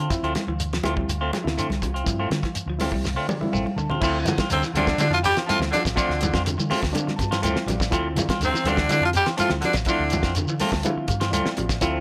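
A raspy, up-front tenor saxophone carries the melody from 4.5 to 10.3 seconds over a clear, very quiet trombone and a punchy baritone saxophone on second lines, in this intense, hypnotic afrobeat excerpt in D minor at 123 BPM, driven by a round, envelope-filtered fingered bass, a dry 70s drum kit with a fat snare that plays a fill at 3.0 seconds, grainy shekere, ringing congas, a reedy electric piano with fast tremolo adding fills, and two clean hollow-body guitars, one playing arpeggios in the background and the other playing stabs bathed in spring reverb, all set on a held Dm7 in a light reverb.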